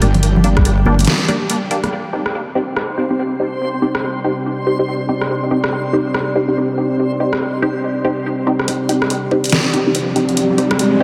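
Deep dubstep at 142 BPM in C minor with a cavernous, meditative, half-time swing, cut from a longer piece. A resonant, wave-folded dub chord stab under phaser and dub echo opens with a filter sweep over Gm alongside a reversed granular texture, soft-handed congas and a briefly heard saturated, wobbling sawtooth bass with chorus. A moody sub-octave analog pad then enters on Cm at 1.9 seconds alongside a filtered hi-hat, rim click and deep snare re-recorded in a large room. A tape-warm knocking kick returns at 8.7 seconds for a build-up with an electronic riser, everything soaked in huge, dreamy reverb.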